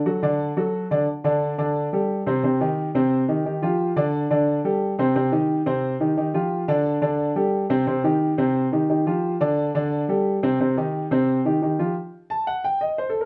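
Nostalgic and sultry, this short Latin piece, cut from a longer work, moves at a brisk 176 BPM in a straight 4/4 feel. A lone grand piano carries everything from 0.1 s to 13.3 s, its tone dark, mellow and boxy, sitting up front and spanning C3 to A5. After an opening D chord, the harmony settles into a repeating cycle of D7sus4, Cm and G5 that gives the passage its brooding, circling character. At 12.0 s the chords fall away and the piano continues unaccompanied by harmony until the close. A moderate studio reverb lends the instrument a modest sense of room around its close, intimate sound.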